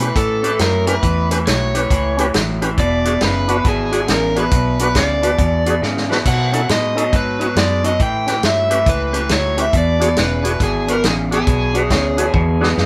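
This electric blues shuffle rolls along at 138 BPM in a swung 4/4, with a rollicking, soulful mood in E mixolydian, and it is cut from a longer piece. An overdriven, compressed electric guitar carries the melody, while a bright, twangy, lo-fi guitar through a small old amp drives a low riff beneath it. A thick tonewheel organ, lightly overdriven and turning through a slow rotary speaker, fills in the accompaniment. A dark, round, foam-muted fingered bass anchors the bottom, and a dry, mid-forward soul drum kit with a punchy kick and a rolled-off top plays drum fills at 5.8 seconds and 12.3 seconds. The changes move through A7, E7 and B7, and near the close, at 11.9 seconds, a second guitar through a small old amp adds a short, phaser-tinged line in the background. The whole band sounds like it is playing live in one room with light reverb.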